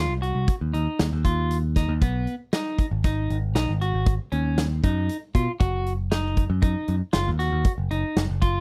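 Progressive instrumental band music in 7/4 at 117 BPM, with an intricate, tense mood, cut from a longer piece and moving through Ebm, B and Ebm/Gb. A clean, picked electric guitar plays up-front arpeggios with a warbly pitch drift, over a bright, direct-amped picked bass and a big, natural-sounding rock kit with a punchy kick, medium-tuned snare and hi-hat, the drums entering at 0.2 seconds. The sound is dry and close, like a 1970s studio recording.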